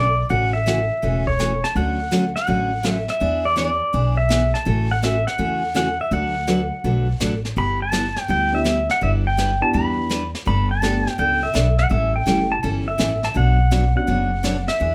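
A cheerful, down-home western swing excerpt in a swung 4/4, led by a twangy, up-front pedal steel guitar played with fingerpicks and slide, over a bright, full-bodied picked acoustic guitar with audible finger squeak, a woody, thumpy pizzicato upright bass on gut strings, and a vintage brush kit with a high-tuned snare and punchy kick from 0.3 seconds, while a dark, boxy upright piano joins from 8.5 to 14.1 seconds, all set in a moderate club reverb.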